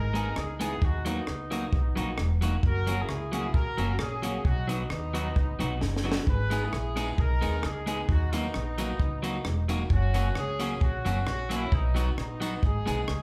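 A woody, pizzicato upright bass sits up front with a dry, compact cocktail drum kit of punchy kick, high-tuned snare, rim click and hi-hat, driving a mischievous ska groove at 132 BPM in G# minor with a light swing. A slightly broken-up, compressed electric guitar supplies picked accompaniment while a distant, roomy horn section carries the melody with light vibrato, the band playing live together in one room with moderate large-studio reverb. After a drum fill at 5.8 seconds, a very quiet, jingly tambourine joins at 6.5 seconds in this short cut from a longer piece.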